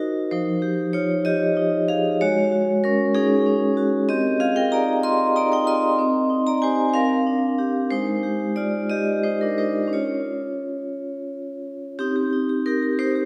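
A rubato 6/8 pulse, hovering around 57-64 BPM in dotted quarters, gives this contemporary classical piece for solo vibraphone a flowing, hypnotic sway. The vibraphone is played with medium hard mallets, and its bright, metallic, ringing tone carries a fast motor vibrato across a range from F3 to Eb6. The harmony opens on Fm9 and Ab7sus4 before settling into C minor at 4.1 s with Cm11 and Cm9, then moves through Bb69/C, Abmaj7 and Db. A new passage begins at 12.0 s on Cm7. The sound is heard from further back in a concert hall, its wet reverberation trailing each chord with a 1.9-second decay, and the passage is cut from a longer piece.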